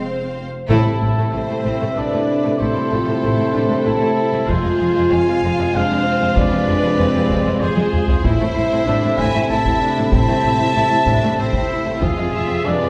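A reverberant concert-hall sound wraps this epic, dramatic film-score passage, cut from a longer piece and moving at 96 BPM in 3/4 in A harmonic minor. A lush violin section carries the melody with focused vibrato, while a second, softer violin section sits behind it on a supporting line. Violas and cellos fill out the accompaniment and low end with a smooth, even bowed tone, and double basses add a focused, bowed foundation beneath them. Mellow French horns hold soft-edged chords from the opening, and at 0.7 s clear, close trombones, distant trumpet stabs pushed up front and a dry, hard-hit taiko ensemble join on a full band accent, with timpani barely audible for that first moment. The harmony shifts between A minor and F minor, and a taiko fill at 7.8 s leads back into A minor. The result is epic, dramatic and cinematic, with brass and drums adding weight to the sweeping strings.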